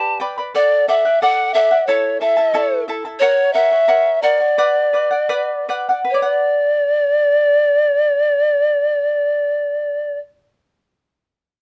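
Closely miked and nearly dry, this short cut from a longer Andean folk piece has an earthy, festive mood in two, with a mellow bamboo pan flute up front carrying the melody in an airy tone with vibrato, tongued notes, breathy chiff and rolled-off highs. Beneath it, a fingerpicked charango supplies acoustic accompaniment, its double strings, some doubled at the octave, giving a warm, shimmering sound. The harmony moves from G through D, A and F# to B minor, and the pace slows between 3.2 and 6.1 seconds before the second section begins.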